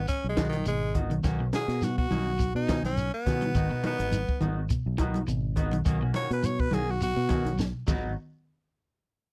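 A dry, close 1970s-style studio sound frames this defiant, intense afrobeat excerpt at 104 BPM in G# minor, where a raspy, gritty tenor saxophone solos up front over a round, dark fingered electric bass, a compact cocktail drum kit with dusky cymbals, a high-tuned snare and a punchy kick that closes on a drum fill at 7.6 seconds, a slightly broken-up electric guitar picking arpeggios, grainy shekere and ringing congas in the background, and clean, fingered stabs from a hollow-body electric guitar, while the harmony alternates between G#m7 and Bmaj9.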